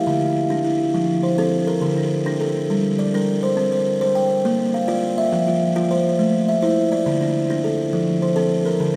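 A solo buzzing kalimba, thumb-plucked with a woody, ringing tone and placed close and up front, carries this warm, rippling southern African traditional excerpt in F major at 137 BPM in a straight 12/8, moving through chords such as Dm, F, Gm and Bb for about 9 seconds inside a long cathedral reverb.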